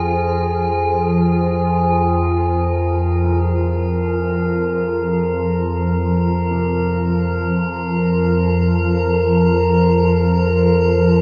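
Dark ambient drone in free time, cut from a longer piece, where a calm, nasal organ-like drone with ensemble chorus and an eerie, metallic inharmonic drone with chorus hold up front through slow attacks and long releases, while a very quiet baby grand piano enters at 3.2 seconds with low arpeggios, all soaked in a huge, dreamy reverb for a dark, unsettling mood.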